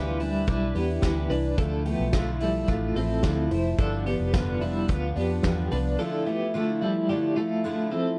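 A lightly reverberant, bright and nostalgic jangly indie pop fragment at 109 BPM moves from Em7 to Dmadd9, with a shimmering, octave-doubled picked twelve-string acoustic guitar with audible finger squeak and a twangy, compressed twelve-string electric guitar playing arpeggios through tremolo across all 8.2 seconds, while a dark, round, foam-muted vintage fingered electric bass holds the low end until 6.0 seconds and a roomy, loose indie drum kit with a fat snare, punchy kick and hi-hat plays from 0.2 to 5.8 seconds.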